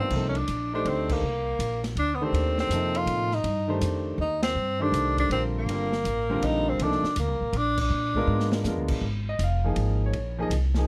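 Closely miked with light reverb, this detailed excerpt of intense, hypnotic modal jazz swings in 3/4 at 162 BPM in C dorian, with band accents and short drum fills punctuating the groove. A clear, softly attacked tenor saxophone with light vibrato carries the melody until 8.6 seconds, sounding distant and roomy yet up front, while a natural concert grand piano with deep bass comps over Cm11, then Bb7b9, before moving to Eb9sus4 at 9.0 seconds. Beneath them, a growly, thumpy pizzicato upright bass sits woody and forward, and a small-room acoustic drum kit adds dark cymbals, a medium-tuned snare and a boomy kick.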